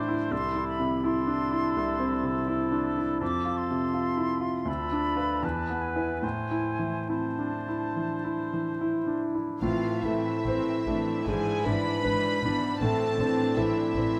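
A clear, natural grand piano sits up front with the melody of this brooding, tragic classical passage in 4/4, its rubato phrasing moving through minor harmony. Around it, an airy, bright concert flute with vibrato, a dark, distant clarinet and a warm solo oboe with light vibrato weave second lines; the flute stops at 8.8 seconds and the oboe at 9.2 seconds. From 9.6 seconds, bowed string sections enter playing sul tasto, with floating, pure violins joining the melody while intimate studio violins add a second line, and a smooth-topped viola section and soft-attacked cellos sit in the background over double basses, all captured with light reverb and close, detailed microphones in a cut from a longer piece.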